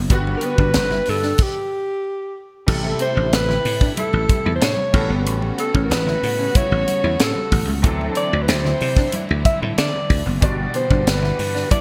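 Bright, glossy 1980s-style digital production with light studio reverb frames this upbeat jazz-funk pop clip, cut from a longer piece and moving at 93 BPM in a straight 4/4. Up front, a crisp fusion drum kit with a high-tuned snare, tight kick, hi-hat and crash cymbals rings through gated reverb, while a dry, growly thumbed slap bass punches out the low end. A breathy alto saxophone enters at 0.4 seconds to carry the melody, playing mellow, scooped notes with light vibrato. Behind them sit a brilliant grand piano with ensemble chorus, a slightly broken-up electric guitar riff through a small old amp with subtle chorus, a lush bowed string section holding smooth sustained chords, and very quiet, thick-skinned vintage congas. A stop lands between 1.4 and 2.7 seconds before the phrase repeats over a progression moving from Gmaj7 through Am7, A13 and D9 and back to Gmaj7.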